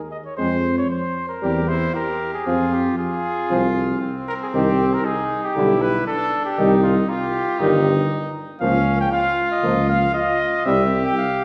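Classical brass quintet music, triumphant and warm, cut from a longer piece and heard from further back in a wet recital hall. A mellow trumpet carries the melody up front with light vibrato, while a smooth-topped tuba with a soft attack holds the bass just as prominently. A dark, distant French horn and a trombone with vibrato sit in the background as accompaniment, and a clear second trumpet adds its own line from 1.4 seconds.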